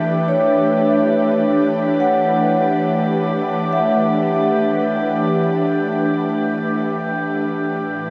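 Floating in free time, this brief ambient passage, cut from a longer piece, drifts along with a peaceful, weightless calm. An ethereal, airy pad sits up front, holding one suspended chord through the full 8.1 seconds, its detuned unison tone softened by slow attacks, a long release, ensemble chorus and its own reverb. A vibraphone played with soft mallets and the motor off ripples through mellow, ringing arpeggios high in its register, each note trailed by delay until it stops at 7.7 seconds. Alongside them, a quiet texture of glassy, drifting overtones holds a single sustained tone, lightly chorused and washed in reverb. The whole recording sits in a vast, echoing space with a huge, lingering reverb tail, and it fades out from 4.7 seconds to the end.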